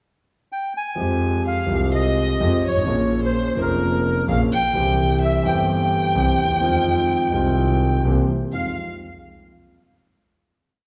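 In uneven groups of three and two eighths, the grand piano and bowed double bass drive this short, complete tango at 128 BPM in 4/4. The feel stays rubato and the mood tense and sultry in F minor. A reedy, vintage-toned bandoneon enters at 0.5 seconds during a pickup bar and carries the melody in motif-based sentence phrases, its band-limited sound set up front. The piano, present with a long sustain, and the earthy bass both come in at 1.0 seconds. A warm violin joins at 1.5 seconds as a second line, bowed with vibrato, a soft attack and portamento, expressive and doubling in unison. The harmony moves through Fmadd9, Bbm7, C and Fm7 before a C7 resolves to a closing Fm7 chord, all bathed in the lingering reverb of a recital hall.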